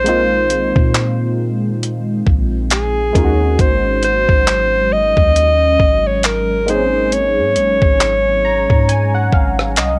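Contemporary R&B at a slow 68 BPM in 4/4 with swung sixteenths, this longing, sensual excerpt moves from Bb9sus4 to Ab9sus4 at 3.1 seconds. A breathy alto saxophone with light vibrato carries the melody up front, over detuned analog keys with chorus, a glassy, ethereal FM pad with phaser and reverb in the background, and a deep, round 808-style bass. A gritty, compressed sampler-style kit with a thumpy kick, rim click, hi-hat and handclaps enters at 0.1 seconds, and the keys add a fill from 8.0 seconds, while a cassette-tape haze colours the sax, keys and pad in a dry home recording.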